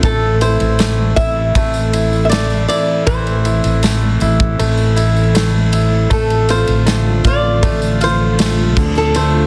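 This pop ballad moves at a steady 79 BPM in a straight 4/4, with a hopeful, emotional mood over a progression from Am to F6/A and then Dm7, cut from a longer piece. A flamenco guitar carries the melody with fresh strings and audible finger squeak, its notes trailed by tape echo. A brilliant concert grand piano with deep bass and short sustain supplies the accompaniment. Beneath it, an airy, breathy pad holds detuned sustained chords softened by chorus, and a fingerpicked dreadnought steel-string guitar adds full-bodied arpeggios in the background. A fretless electric bass sits up front with a warm, amped tone, while a modern studio kit with a tight kick, medium-tuned snare, ride and crash plays alongside a jingly, close and dry tambourine until both stop at 9.3 seconds. The whole is set in a moderate recital hall reverb and finished with a dense, heavily limited modern master.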